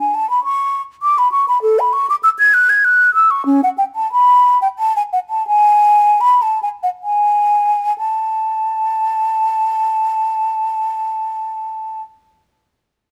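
Radiant and dance-like, this classical excerpt is a baroque-style fantasia for unaccompanied concert flute in A major, set in 3/4 with a free, rubato feel that ranges between 60 and 103 BPM. The flute carries the whole piece as a solo from the opening until 12.0 seconds, spanning from C#4 up to G#6. Its tone is airy, mellow and hollow, with a soft attack and vibrato, and it sits up front in a light reverb. The opening section runs to 8.0 seconds, with the tempo slowing between 2.5 and 8.0 seconds before a new section begins at 8.0 seconds. Tuned slightly below modern concert pitch at A4 = 438 Hz, the recording is cut from a longer piece.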